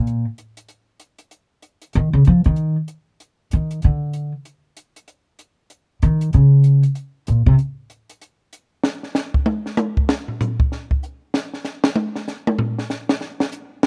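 Small-group swing and bop jazz at a playful, swinging 192 BPM in 4/4, this dry, close-sounding fragment of a longer piece opens with a pizzicato upright bass solo, woody and thumpy on gut strings, sitting up front and ranging from Bb2 to F3 until 7.5 seconds. A compact cocktail drum kit of hi-hat, kick, snare and toms plays from the start, then takes its own solo from 8.8 seconds, its high-tuned snare and punchy kick sounding dry and close.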